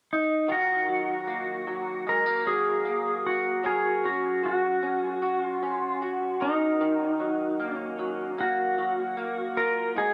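Dream pop in Eb minor at 76 BPM, this short excerpt cut from a longer piece drifts in a hazy, melancholic mood over a straight 4/4 pulse. A clean lap steel guitar carries the melody from 0.1 seconds between Eb4 and Bb4. Its sliding, fingered tone is warm and twangy, shaped by volume swells and analog delay, and it sits up front. At 0.5 seconds an electric guitar through a small old amp joins with picked arpeggios ranging from Ab2 to Bb4. Its sound is bright, slightly broken-up, compressed and lo-fi, thickened by ensemble chorus and analog delay. The harmony moves from Ebmadd9 to Gb at 3.6 seconds and back to Ebmadd9 at 6.8 seconds, and both guitars play on to the end at 10.1 seconds. A wet spring reverb with a 1.8-second decay and an echo-heavy mix surround the guitars in a dreamy wash.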